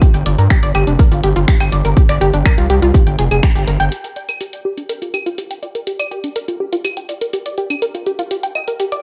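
Dramatic and cinematic, this melodic techno cut from a longer piece moves at 123 BPM in a straight 4/4, rooted in G phrygian. A tight, driving sequenced synth plays arpeggios throughout, its detuned sawtooth and pulse-wave tones given a plucky filter snap, chorus, tape echo and sidechain pumping. A punchy, up-front electronic kick drives the opening until 3.5 seconds, while a house drum kit of claves, finger snaps and hi-hat runs the full length, its hats and percussion pumping against the sidechain. A gritty, aggressive synth bass built from square, sawtooth and sine waves with oscillator sync growls underneath with a resonant filter sweep and saturation, dropping out at 3.9 seconds as the harmony shifts from a chordless opening to Gm and later Dmadd11. The band hits an accent at 3.4 seconds, and the whole sits in light reverb and digital ambience, with the drums carrying a tape-warm, small-room character.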